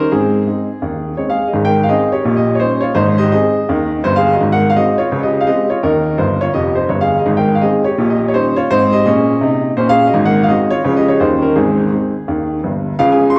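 Swinging and exuberant, this short stride piano excerpt moves at 168 BPM in 4/4 with swung eighth notes, set in Ab major and tuned slightly below standard pitch. A single baby grand piano plays solo throughout, its boxy, up-front tone spanning F1 to C6 as it cycles through Ab, Eb7/Bb, Ab7, Dbmaj7 and Eb changes, with a brief fill from 6.2 to 7.3 seconds. The performance sits in a reverberant recital hall, giving the sound the resonant glow of a church or concert space.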